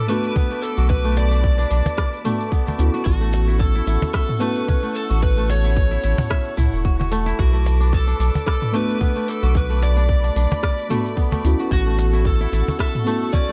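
An overdriven slide guitar carries the melody through delay from the opening, over lush bowed strings pumping softly in the background and bright, ringing kora arpeggios, in a mystical, meditative slice of organic downtempo in B minor at 111 BPM with a gentle 16th-note swing. Muted, felt-like synth keys with chorus and delay join just after, alongside an electronic kit of smooth hats, rim clicks, shaker and toms, while a tight electronic kick and a snappy, dry cajon arrive at 0.4 seconds. A round, deep analog bass pumps up front from 0.8 seconds, anchoring the slow Bm7 to A6 movement in a dark, ambient mix.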